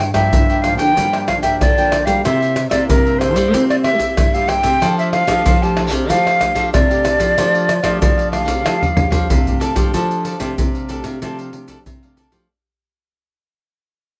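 A light reverb gives this short cut from a longer samba and choro piece a sunny, playful sheen at 94 BPM in a straight 4/4, set in F major. Up front, a breathy wooden flute carries the melody with a close-miked, slightly unsteady tone, tongued notes and vibrato, before falling silent at 9.6 seconds. Beneath it, a warm, full-bodied nylon-string guitar fingerpicks the bass line with audible finger squeak, while a second classical guitar with fresh strings and a crisp, picked cavaquinho sit in the background as accompaniment over a Gm7 to C7 to F69 progression. Pandeiro, tamborim, egg shaker and a deep surdo play close and present in a small-room sound, with a drum fill arriving at 8.7 seconds. The ensemble then moves into a new section at 9.9 seconds as the recording fades out.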